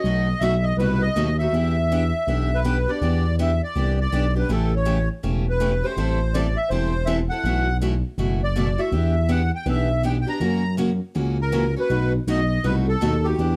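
A fiery swing pulse at 162 BPM in 4/4 drives this short excerpt of acoustic string swing in E minor, cycling through changes such as B7, Em7, A7 and F#7. A reedy, sweet accordion with light tremolo tuning carries the melody up front, while a bright, boxy parlour steel-string guitar accompanies with picked fresh strings and audible finger squeak. Beneath them, a smooth, wave-folded sawtooth synth bass sits prominently, with sustained notes, vibrato and portamento glides, all in a dark production with light reverb.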